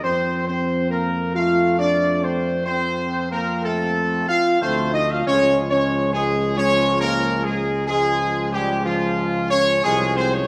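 A regal, solemn brass fanfare in a classical ceremonial style opens with the full section at once: a warm, punchy trumpet section carries the melody up front, while a dark, roomy French horn section and a bright trombone section, set in the background, hold sustained chords over a mellow, soft-attacked tuba bass. Moving at 92 BPM in a straight 4/4 and tuned to A4 = 438 Hz, the harmony rests on F before shifting to Db at 5.3 seconds. A wet scoring-stage reverb gives the ensemble a spacious sheen across this brief cut from a longer piece.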